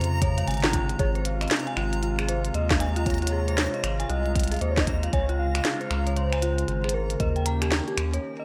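IDM with a wistful, glitchy mood and a swung sixteenth feel, cut from a longer piece. A warbly, lo-fi tape-like pad holds sustained chords while a dark, detuned FM synth bell plays eerie, inharmonic arpeggios through chorus and digital delay, over a round analog bass sitting up front, a deep electronic kick, and a glitchy kit of finger snaps, clicky hi-hats and a tiny snare, with a reversed, dreamy backwards texture swelling faintly in the background. A velvety synth lead with vibrato carries the melody from 1.0 s, and the bright 1980s-style digital production, set in moderate plate reverb, reaches a break at 8.2 s.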